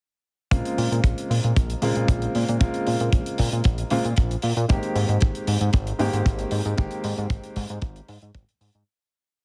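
Sleek and cosmic, this short nu-disco piece grooves at 115 BPM in Bb dorian, with a tight, dry kick stamping four-on-the-floor up front and a rolled-off hi-hat tapping out a disco backbeat, both touched with studio reverb. A fat, nasal, saturated analog bass built from detuned sawtooth and square waves plucks and jumps octaves, while a boxy grand piano holds rootless chords with syncopated pushes, pumping from sidechain and trailing analog delay as the harmony moves from Bbm7 to Abmaj7 at 4.7 seconds. The small room and heavily compressed, radio-like sound give it a close, squeezed feel before it fades out from 6.1 seconds.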